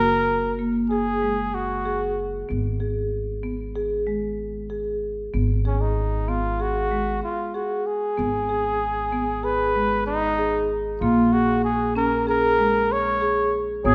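This contemporary instrumental chamber piece moves in an uneven 9/8 at 190 BPM counted in eighths, with a straight, hypnotic and pensive feel in G# dorian. A close-miked flugelhorn carries the melody as an up-front jazz-style solo, its tone warm and touched with vibrato. A marimba played with medium mallets on rosewood bars spins arpeggios beneath it with a woody, vintage, band-limited sound that sits near the front. Underneath, a pizzicato upright bass on gut strings gives a dark, thumpy foundation. The harmony opens on F#add9 before a chordless stretch, pauses for a break from 7.2 to 8.2 seconds, then moves through G#m and A#m7. At 13.8 seconds a distant, roomy, classical-style woodwind section enters with sustained chords just as the cut from a longer piece ends, and the whole ensemble sits in a wet scoring-stage reverb.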